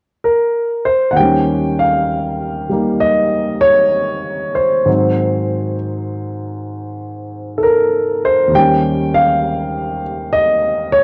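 Relaxed and warm, this short cut from a longer piece is solo jazz at a slow 66 BPM in 4/4, with a swung eighth-note feel and a rubato sway. A lone grand piano carries everything, entering at 0.2 seconds and ranging from Eb2 up to G5 in Eb mixolydian. Its tone is intimate and natural, sitting up front with audible action noise from the instrument and a cassette-tape character. The harmony opens unaccompanied by chords before settling on Eb7 at 1.2 seconds, moving to Ab7 and then returning to Eb7. A moderate spring reverb and the homespun cassette recording give the room a cozy, close-to-the-keys feel.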